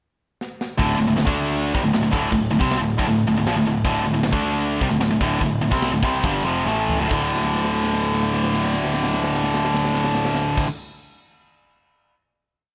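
A drum fill opens this short, dark and relentless heavy metal piece, then a bright, up-front distorted guitar and a scooped high-gain guitar in the background hammer out a power-chord riff over a growly fuzz bass that doubles it in driving eighth notes, the riff slowing from 3.8 seconds before a final chord rings out at 7.1 seconds under drum fills, all in a rough home-demo mix with a small-room sheen.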